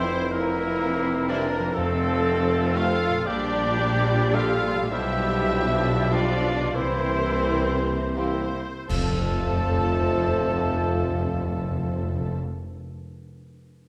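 Bathed in wet recital-hall reverb, this serene, warm passage from a slow, rubato romantic orchestral movement in 6/8 and F major gradually slows toward 8.9 seconds, with a veiled melody on muted violins over second lines from dark clarinet, hollow flute, oboe and a further muted violin section in the background, while bassoon and muted violas accompany, French horns and trombones (the trombones entering at 1.3 seconds) hold sustained chords, harp adds ringing arpeggios, muted cellos, double basses and tuba carry the bass, and soft-mallet timpani mark the opening and the accent at 8.9 seconds, where bright clash cymbals and concert bass drum join.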